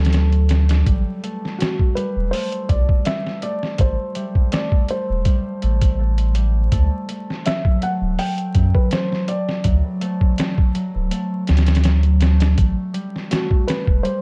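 A cinematic, melancholic trip hop piece at 82 BPM in 4/4 with a light 16th-note swing opens with piano, harp, bass and drums together. A thick-felt upright piano carries the melody, soft and intimate with audible action noise and tape echo, over thumb-plucked concert harp arpeggios that ring through a low-pass filter and echo, while a round, deep analog bass with a filter sweep sits up front beside a compressed, pitched-down sampler drum kit with a thumpy kick, medium-tuned snare and hi-hat in studio reverb. The harmony moves from D to Am and back to D before breaking off at 12.6 seconds, all in a dark small-room production dusted with vinyl crackle.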